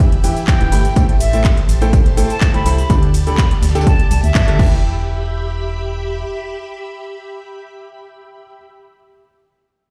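Heard through a big sound system in a bare room with a large studio reverb, this soulful, bittersweet piano house fragment opens on a drop: a punchy, tape-warm electronic kick, a layered house kit with metallic hats, crash, ride, cabasa and handclaps, and a gritty, very quiet sampler-style break of hi-hat, snare and tambourine, all gone by 4.7 seconds. A clear, vintage grand piano riff with delay, shimmering sawtooth string-machine violins and a hollow, dark, organ-like FM bass all pump under sidechain, while an airy silver concert flute with vibrato and delay carries the melody. A band accent lands at 4.3 seconds, and once the bass drops out at 6.2 seconds, the piano and strings carry on alone.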